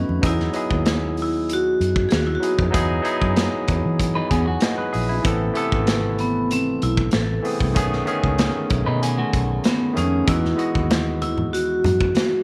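A steady, straight 4/4 groove at 96 BPM, carried by a tight-kicked studio drum kit with a roomy, distant sound and a dark, foam-muted fingered bass, underpins this lush, romantic 1970s-style soul excerpt in E major, its chords moving from Emaj9 through Amadd9 and B13 before returning to Emaj9 at 10.3 seconds. A barky, lightly overdriven tine electric piano sits up front throughout, while a ringing, metallic vibraphone with slow motor vibrato carries the melody, pausing briefly before returning at 6.2 seconds. A slightly broken-up guitar through a small old amp plays a compressed, picked riff from 4.2 seconds, and low-tuned congas with hard hands linger in the background near the close, all under a light reverb.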